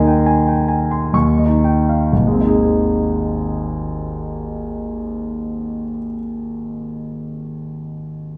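In a slow, rubato 3/4 at 65 BPM, this short fragment of a longer romantic character piece for solo piano opens by slowing down over its first 2.1 seconds before a new passage begins. The mood is passionate and warm, set in Ab major, with the instrument tuned to A4 = 435 Hz. The concert grand plays alone throughout, spanning Ab1 to Db6, its natural tone anchored by a deep bass. The harmony moves from Ab/Eb through Eb7 and settles on Ab at 2.1 seconds, where the second passage unfolds until 7.7 seconds. The piano sits in a wet recital hall with a 1.4-second reverb, heard from further back in the room, and the excerpt ends at 8.4 seconds.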